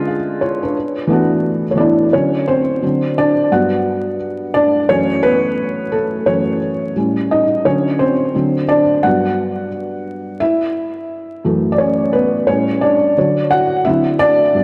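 Hip hop with a cosy, nostalgic mood, built entirely on a felt-muted upright piano that plays solo for the full 14.6 seconds of this short excerpt cut from a longer piece. The piano sits up front, its tone soft and dark with thick felt, short sustain and audible action noise that makes it feel intimate. A low-pass filter and tape echo shade the piano, spanning F#2 to F#5 over a swung sixteenth-note feel in 4/4. The opening passage moves through tense dominant colours before settling at 2.1 seconds into a longer section that cycles through major seventh, dominant and minor seventh chords. The overall mix is dreamy and soaked in a wet plate reverb, with vinyl crackle adding a nostalgic surface.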